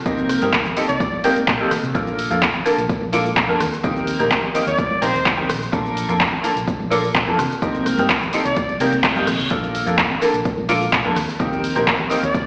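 Heard as if through AM radio blasting on a big sound system in a bare stone room, this joyful filtered disco house excerpt at 127 BPM in Bb major sets a bright, worn grand piano with phaser, 12-bit sampler grit and sidechain pumping over Cm7, Bbmaj7 and Eb6 chords, a dark, round hollow-body bass with tube saturation, a punchy electronic kick, an overdriven analog drum machine of handclaps, hi-hat, rim click and shaker, and ringing tambourine and congas in the background, while a loose trumpet section plays short bursts through dub echo from 0.9 s and a reverse cymbal sweeps in at 8.8 s.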